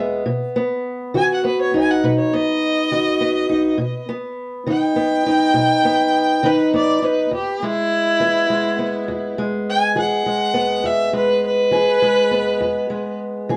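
Acoustic country blues in a straight 12/8 feel, rollicking yet soulful, this short passage from a longer piece pairs a fingerpicked parlour guitar with a bowed fiddle. The guitar, dark and boxy, carries the accompaniment from the opening, and the fiddle enters at 1.2 seconds to take the melody, its rich, focused tone touched with light vibrato. Both sit up front in a moderately reverberant studio, heard from further back in the room, with the fiddle holding a somewhat distant quality.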